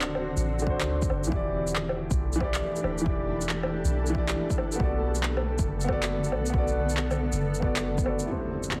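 Swung sixteenths drive this wistful, nocturnal future garage fragment, where an up-front, woody upright piano roughened by 12-bit sampler grit, low-pass filtering and dub echo pumps alongside a blurred granular cloud pad and a soft, round 808-style bass, while overdriven electronic handclaps, woodblock and shaker run throughout, a deep overdriven kick enters at 0.7 seconds, a very quiet flickering grainy texture arrives at 2.1 seconds, and an electronic impact lands at 8.3 seconds over the Am7 chord, all in a heavily compressed, radio-like room.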